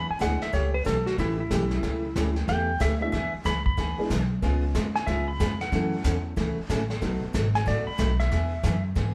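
A brisk swung pulse at 185 BPM in 4/4 drives this short, playful country and western swing excerpt in E mixolydian, with a down-home feel. A vintage brush drum kit enters at 0.2 seconds with smooth brushed snare, hi-hat and a punchy kick, its top end rolled off in a small-room sound, while an upright bass sits up front, plucked and thumpy with a woody tone. An electric slide guitar solo runs across the whole excerpt, and a clean lap steel guitar plays a second line, dark and compressed, its slide phrases shaped by volume swells, over a bright, full-bodied picked acoustic guitar picking out the changes. A mellow, boxy upright piano adds short-sustained chords in the background until 7.9 seconds. The harmony moves from E7 through A7, C#7, F#m7 and B7 before landing back on E7, and the whole band sounds like it is playing live together in one room with light reverb.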